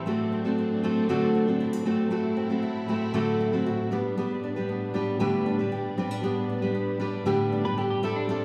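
A full-bodied, fingerpicked steel-string acoustic guitar sits up front in this reflective, tender acoustic pop excerpt, joined by classical nylon-string arpeggios and a lush bowed string section holding smooth, vibrato-tinged chords over a move from D7/A to G/A, while a clean, compressed twelve-string electric guitar adds a brief second line at 0.0 s and returns at 7.7 s, all played live together in one room and bathed in a large studio reverb.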